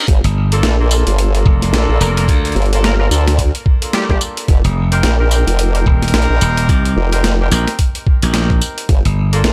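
Swaggering and playful, this glitch hop excerpt struts along in 4/4 with a 58% swing on the sixteenths, cut from a longer piece. A gritty, pitched-down, sampler-style drum kit supplies hi-hat, tambourine and a high-tuned snare in studio reverb, while a compressed, thumpy electronic kick sits up front beneath them. Two basses share the low end: a formant-sweep wobble bass built from pulse and sine waves, warmed by tube saturation and thickened with chorus, and a glassy, growly slap bass with a punchy, direct bite. Above them, a warm, distant horn section plays roomy pop-style stabs with light vibrato, pumping against the sidechain and trailing tape echo. From 2.0 to 4.2 seconds an edgy, tearing sync lead with a sub octave, vibrato and subtle chorus sits in the background, and the harmony moves from Gm7 to F7sus4 at 4.5 seconds before returning to Gm7. The overall mix is loud and fairly dry.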